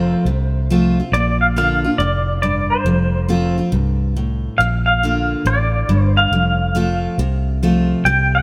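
Lightly reverberant and close, this nostalgic, down-home honky-tonk country snippet swings along as a twangy, compressed electric guitar carries the tremolo-tinged melody over a bright, full-bodied picked steel-string acoustic guitar with audible finger squeak and a dark, round, foam-muted vintage electric bass, all three up front, while the harmony rocks back and forth between two chords.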